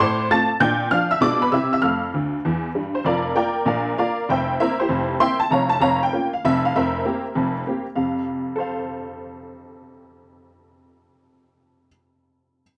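A jangly, detuned, boxy honky-tonk upright piano sits up front in a club room with moderate reverb, playing a swinging, exuberant stride jazz solo at 196 BPM in F major, spanning low F1 to high A6 with a fill from 2.1 to 3.1 seconds and a harmony moving through Bb/F, C7/F and Bbm/F before resolving to F at 8.0 seconds in this brief cut from a longer piece.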